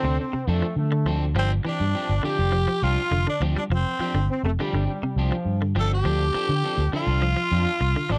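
Afrobeat at 102 BPM in 4/4, hypnotic and funky, built on a Dm7 to G7sus4 vamp in a dry, close 1970s-style studio sound, cut from a longer piece. A growly, amped fingered bass sits up front under a clean, picked guitar playing arpeggios and a twangy, slightly broken-up guitar adding stabs through spring reverb, while a tight, brilliant trombone section carries a second line until 5.6 seconds. From 1.4 seconds a raspy, gritty tenor saxophone takes the up-front melody, with a whispered, breathy trumpet playing a second line in the background.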